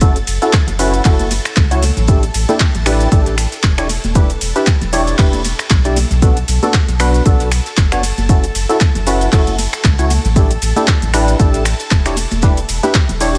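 A hollow, chorused organ stab with dub echo and cassette-tape grit pumps over a round sine sub bass, an up-front deep kick, a metallic-hatted deep house kit of snaps, claps, ride and shaker, a very quiet dry and dark cloth-damped kit, and shimmering string-machine violins in the background, with bright, close congas joining at 0.7 s, in this smooth, warm deep house excerpt at 116 BPM with swung 16ths, moving through F#m7, Em7 and Bm7 in a small room under vinyl crackle.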